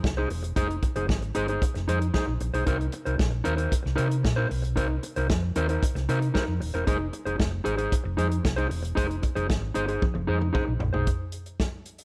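A light reverb gives this danceable, sultry disco excerpt a gentle sense of space, moving in a straight 4/4 at 114 BPM over Fm7 and Cm7 chords. A clean, mellow electric guitar sits up front in accompaniment, while a hollow-body short-scale fingered bass supplies a round, punchy, amped low end. The roomy soul drum kit, with its tight kick, medium-tuned snare, hi-hat, toms and rolled-off top, plays a drum fill from 10.0 to 11.1 seconds and is the last part heard, ringing on until 12.0 seconds.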